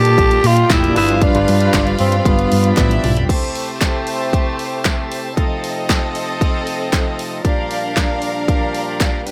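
Joyful, danceable disco excerpt in which a growling, breathy tenor saxophone leads up front over a lush violin section, a bright shouting tonewheel organ on a slow rotary speaker, a gritty tine electric piano with fast tremolo in the background, a round hollow-body bass and a punchy layered house drum kit, soon joined by crisp group handclaps, until a drum fill at 2.8 seconds hands the rest of the passage to the strings, the organ, the drums and the handclaps, all in light digital reverb.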